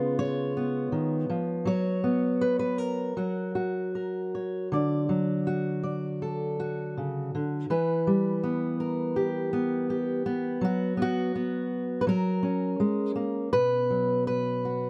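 Folk fingerstyle piece for a single fingerpicked steel-string acoustic guitar, hopeful and gentle, moving with a loose, rubato feel in this short excerpt cut from a longer work. The guitar sits up front with a dark, auditorium-body tone, and close, detailed microphones catch the finger squeak under light reverb. Its chords drift from C#7 through suspended and resolved F# shapes, D and Em before settling on a bare B5 at 13.5 seconds.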